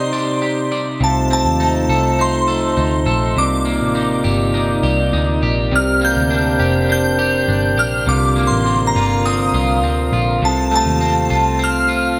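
A shimmering bell with a halo carries the melody up front, its bright, fast-attack FM tone decaying through ensemble chorus and tape echo in this haunting, melancholic dream pop excerpt at 102 BPM in C dorian. Beneath it, an electric guitar at the edge of break-up picks twangy arpeggios with subtle chorus and tape echo, while a mellow French horn section holds loose, classical-style chords with light vibrato. A very quiet vibraphone with medium mallets adds dark, ringing texture with slow motor vibrato until 10.7 seconds. After a brief opening break, a vintage muted picked electric bass enters at 1.0 seconds with a round, foam-muted, amped tone. The harmony moves through Cm11, Bb69 and F7/C, and a huge ambient reverb with a long tail wraps the whole ensemble in a hazy, floating space.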